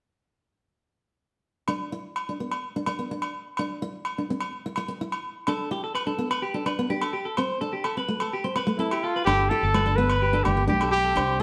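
Highlife guitar band in G major at 126 BPM, joyful and danceable, this excerpt opens with a warm picked steel-string acoustic guitar up front with audible finger squeak and ringing agogo bells, adds bright, twangy clean electric guitar arpeggios at 5.5 seconds, then brings in a mellow up-front trumpet melody with light vibrato and scooped notes at 8.8 seconds before a dark, round fingered electric bass and thin-skinned, high-tuned congas in the background join at 9.3 seconds, all captured live in one room with a wet stone reverb.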